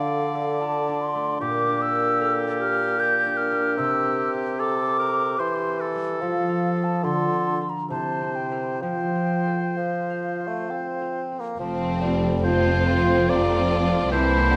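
This excerpt of lyrical classical music in 3/4 moves with a rubato feel at about 63-78 BPM in F major, opening with a woodwind quartet of a hollow, pure concert flute, a close-miked oboe, a dark, distant clarinet and a bassoon woven over ringing, fingerpicked concert harp arpeggios. At 11.6 seconds the strings arrive, with violins taking the melody, a very quiet viola section, a soft-attack French horn section holding mellow chords, and cellos with portamento alongside double basses underneath, while a second, smooth and distant violin section adds a line at 12.4 seconds. A moderate recital hall reverb gives the ensemble a gentle, lush glow.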